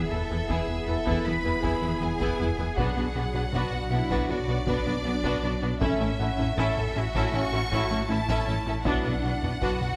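A lush, close violin section carries the melody high above this tense, vast stretch of hybrid orchestral and electronic film score, its bowed vibrato smooth and even. Beneath it, a second chamber violin line sits in the background, focused in tone with a smooth top. A clear viola section adds accompaniment, a rich, smooth cello section and an expressive double bass section supply the bowed low end, and a mellow French horn section holds sustained chords until 9.1 s. On the electronic side, a rubbery, hollow square bass with a resonant filter pluck repeats a dark riff in the background, while a deep, full sub bass with an octave holds the very bottom. Very quiet taiko struck with hard sticks enters at 0.5 s with a close, dry sound, and a polished concert grand piano adds a faint, long-sustaining texture from 1.6 s. The harmony moves from E to Bm, A and back to Bm, all set in a moderate scoring-stage reverb, in this brief section cut from a longer piece.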